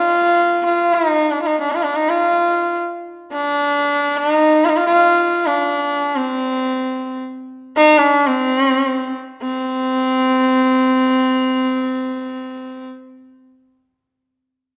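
Indian classical music in free time, meditative and longing, carried by a single up-front bowed sarangi that glides with portamento between C4 and F4, its nasal, earthy tone and airy bow ringing with sympathetic strings in a wet recital-hall reverb, with a new section arriving at 9.4 seconds in this short passage cut from a longer piece.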